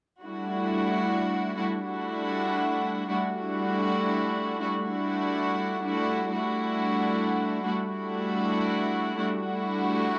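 A gritty hardware recording with transformer saturation, set in a moderate echo chamber reverb, frames this short excerpt from a drum and bass piece. A chamber string section sustains a single bowed Em11 chord from 0.2 to 10.2 seconds, its soft attack and pure, floating ensemble tone sitting up front yet sounding distant. The mood is nostalgic and dark.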